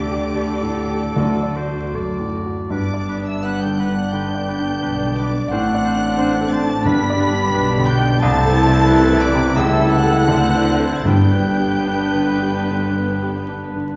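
Rubato 4/4 at about 86 BPM gives this lyrical, lush romantic movement for piano and orchestra in G major its breathing, uneven pulse. This passage is cut from a longer piece. A polished, up-front grand piano with short sustain carries the melody across a broad range, shadowed high above by an expressive violin section rich in vibrato and portamento. Beneath them, second lines come from a clear, very quiet clarinet, a darker, woody second violin section, a pure, hollow silver flute and a distant oboe. Smooth violas fill in the accompaniment, while focused cellos and a deep double bass section anchor the bass. From 1.2 s a mellow, soft-attacked French horn section and a trombone section add sustained chords, a trumpet adds stabs, and hard-mallet timpani with calf heads sound articulate beneath them, moving through chords such as D7/A, Am/C and A7/C# before settling on G. The whole orchestra sits in a recital hall with a 1.6-second reverb tail, heard from further back in the room with a layer of vinyl crackle.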